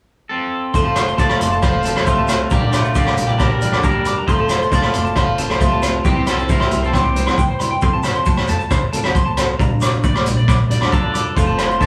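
A twangy, slightly broken-up electric guitar leads the melody through a phaser from 0.3 s, dropping out at 7.4 s and returning at 10.9 s, over a joyful, carefree highlife groove at 136 BPM in F major, where a second electric guitar picks high arpeggios bathed in spring reverb, a dark, fingerpicked nylon-string guitar with finger squeak sits in the background, a woody, growly pizzicato upright bass anchors the low end, a gritty, saturated breakbeat kit of hi-hat, kick and rim click sits up front, very quiet ringing congas, a grainy shekere and agogo bells add percussion, and a bright trombone with light vibrato and tape echo plays a second line further back.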